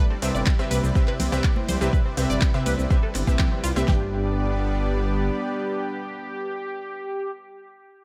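With a dark production and light reverb, this uplifting, euphoric progressive house excerpt at 123 BPM in G major opens on a drop: a lush, bright supersaw pad with slow attack and a tight, driving arpeggiated synth with chorus and dub echo hold the Cmaj7 chord, joined by punchy unison pluck stabs with their own echo, a deep, rumbling detuned saw bass with tube saturation up front, and an electronic deep house kit with a deep kick, fat snare, metallic hats, handclaps, cabasa and ride, plus hard-hand congas tucked close and dry in the background, all pumping to the sidechain except the kick and snare, until the drums and congas stop near 3.9 seconds as the harmony moves to G and the bass drops out at 5.3 seconds.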